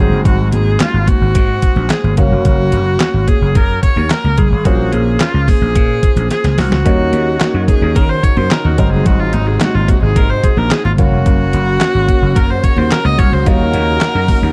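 A dark, dry production frames this danceable early-eighties boogie funk, cut from a longer piece and moving at 109 BPM in Eb dorian through chords such as Ab7, Gbmaj7 and Bbm9. A growly, punchy slap bass and a thumpy, detuned 8-bit drum machine with handclaps, hi-hat, kick and snare sit up front, with very quiet high-tuned congas beneath. A polished concert grand piano with long sustain accompanies an intense bowed solo viola carrying the melody, and after a drum fill at 6.3 seconds a lush studio string section enters at 6.9 seconds in the background with sustained vibrato chords.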